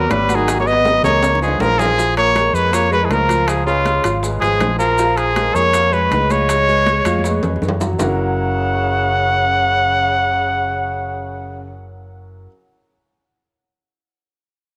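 A moderate spring reverb surrounds this sunny, sophisticated Afro-Cuban jazz excerpt in F# major at 160 BPM, where a clear, up-front trumpet with slapback echo carries the melody over a breathy, scooped tenor saxophone line, a smooth, vintage grand piano, a dark, round fingered electric bass, and background congas, tight bongos, metal-shell timbales and grainy maracas that drop out at 8.1 s, leaving the horns, piano and bass to close on an F#9 chord.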